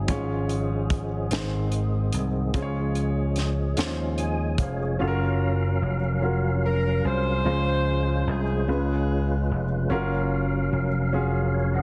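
Up front, a punchy, amped slap bass anchors this short, soulful gospel passage in Db major, moving slowly at 49 BPM in a straight 6/8 with a hopeful glow. A dark, mellow grand piano carries the accompaniment, its action noise audible for an intimate, natural feel, while a fat, lightly overdriven tonewheel organ holds sustained chords through a slow rotary speaker with chorus vibrato and key click, stepping forward with a fill from 3.8 to 5.0 seconds. A tight funk kit of hi-hat, kick and high-tuned snare plays only until 4.8 seconds, lending the opening its rhythmic drive. The harmony moves from Db over Ab through Ab and Db, then opens onto Gbmaj7 at 5.0 seconds, passing through Dbmaj7 and Db7 before returning to Gbmaj7. A smooth-topped saxophone section with vibrato takes the melody from 6.7 to 9.9 seconds, tight and pop-styled, sitting over light reverb and small room ambience in a dense, heavily limited modern master.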